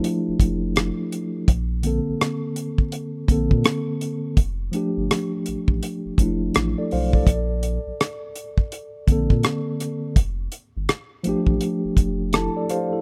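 A swung 16th-note groove at 83 BPM in 4/4 anchors this soulful, sensual neo-soul R&B excerpt in F major, where a damped, dry 70s drum kit with a tight kick, hi-hat and rim click sits up front with a dark, rolled-off top, a deep, thick saturated sub bass holds sustained notes with a fast attack, and a mellow, clean tine electric piano heard through its built-in speakers alternates F69 and Bbmaj9 chords before a brief fill at 12.0 seconds, all within a rough home-demo mix carrying studio ambience.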